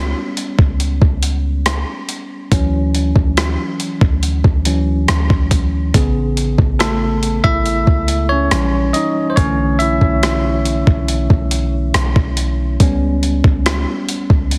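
The recording sounds dry, with a heavily compressed, radio-like sound, in this short section cut from a longer contemporary R&B piece tuned to A4 = 444 Hz. At a relaxed 70 BPM in a straight 4/4, the mood is smooth and romantic, carried by a barky, bell-like tine electric piano that sits up front and takes a bright, direct solo across the full 14.6 seconds while also supplying the chords. Beneath it, a clean 808-style bass gives deep, boomy sine tones with a fast attack and a dark decay. From 0.4 seconds a dusty soul sampler-style drum kit adds hi-hat, rim click and a thumpy kick, its gritty, overdriven sound re-recorded in a large room and placed up front. The harmony moves from Bsus2/C# through Dmaj9, Amaj9, A#dim7 and Bm11 before returning to Bsus2/C#.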